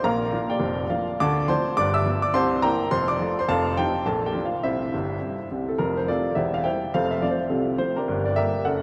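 Drenched in a long cathedral reverb that sets it in a vast, echoing space, this exuberant, playful stride-jazz fragment of a longer piece features a present, up-front baby grand piano with long sustain, playing solo at a swinging 209 BPM in F major across a range from E1 to E6, moving through a turnaround of Bb, Dm7, G7 and C13 before a second section opens on F at 5.8 seconds and closes on Gm.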